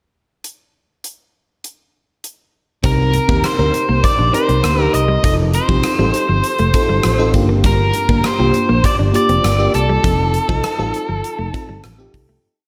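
A biting, overdriven lead guitar sits up front with a motif-based melody of call phrases, carrying this short, uplifting and nostalgic 1980s-style pop piece at 100 BPM through chords of Cm7, F7 and Gm7. A gated 80s drum kit with a tight kick and a big backbeat opens alone with a pickup bar before the verse arrives at 2.8 seconds, bringing a lush, dreamy FM electric piano with a soft pad layer playing syncopated chords, a growly fingered bass with a syncopated pop-funk line, and a muted, clean single-note guitar line in the background. The whole mix is soaked in plate reverb for a dreamy sound, and it fades out from 10.0 seconds.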